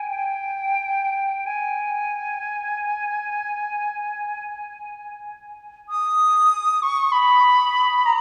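Classical music for unaccompanied flute, this short excerpt carries a lonely, yearning mood in a free, expressive style. A silver concert flute plays alone from 0.0 to 8.2 s, staying high between G5 and D#6. Its tone is pure and metallic, with tongued notes and vibrato, and it sits up front in the sound. A long, wet cathedral reverb, with a decay of 6.2 s, gives the sense of a large church or concert hall. The opening phrase returns at 5.9 s before the fragment breaks off mid-piece.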